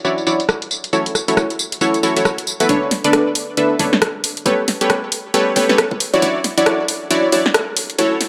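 A swung two-step groove at 136 BPM drives this bouncy, late-night UK garage excerpt in B minor, where up-front detuned sawtooth chord stabs with chorus and delay pluck through Dmaj9, F#m7, Bm9 and A9 over a layered garage kit of cracking snare, bright hats, rim clicks and tambourine, while an overdriven, knocking kick enters in the background at 2.7 seconds to start a build-up, all set in a plate reverb.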